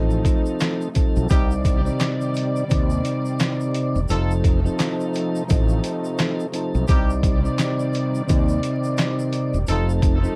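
A swung 86 BPM boom-bap groove from a gritty, overdriven sampler-style drum kit with thumpy kick, fat snare, hi-hat and handclaps drives this moody, dark hip-hop excerpt in C dorian, moving between F7 and Cmadd9. Up front, a round fretless electric bass with analog chorus sits beside a mellow tonewheel organ played through a slow rotary speaker and cassette tape, with its key click audible. Beneath them, a lush, detuned unison pad sustains chords through chorus and phaser, and a grainy tube shaker ticks in the background. From 1.3 s, a smooth-topped horn section with light vibrato and tape echo adds stabs, and the whole mix is framed by vinyl crackle and light reverb in a dark production.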